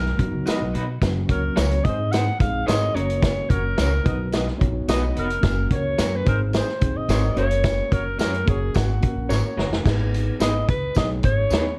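A clear, vintage-toned alto saxophone carries the melody through this short, danceable cut of uptempo 1960s-style soul, moving at 108 BPM in a straight 4/4 in F# major with an uplifting lift. Up front, a gritty, saturated drum kit with dark cymbals, a tight kick and a medium-tuned snare drives the groove alongside a woody, pizzicato upright bass. A mellow tine electric piano fills in the accompaniment, while a punchy horn section with light vibrato and slapback echo plays a second line in the background until about 9.7 seconds. Slightly broken-up electric guitar stabs, colored by tremolo and slapback echo, sit back in the mix with a jingly tambourine that sounds distant, as if in a large room. The chords cycle through B, F# and G# before a drum fill at 9.3 seconds leads into a new section on G# minor at 9.9 seconds, all wrapped in a dark, warm production with light studio reverb.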